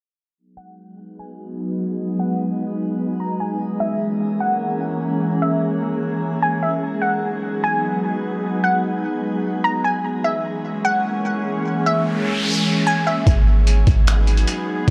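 An ethereal FM pad, up front with ensemble chorus, built-in reverb and sidechain pumping, holds sustained G#m7 and A#m7b5 chords in this hazy, melancholic cloud-rap excerpt at 149 BPM in a half-time feel in G# minor. A crystalline wavetable pluck with chorus, digital delay and a filter sweep plays a high melody from 0.6 seconds, and an electronic noise sweep enters at 12.0 seconds. At 13.3 seconds a deep, boomy 808-style sine bass and a gritty, tape-warm trip hop sampler-style drum kit with a thumpy kick, finger snaps and hi-hat arrive up front.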